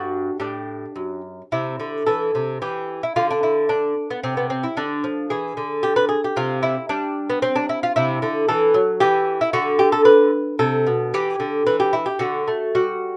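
Radiant and dance-like, this brief 13.2-second cut from a longer classical baroque-style dance in C major moves in a rubato 3/4 at 112 BPM, with a solo lute, bright and delicate with fingerpicked nylon double strings and some octave doubling, sitting up front in a moderate studio ambience as the harmony passes from C and Cmaj9 through Ddim, Am/C and Em before settling on D.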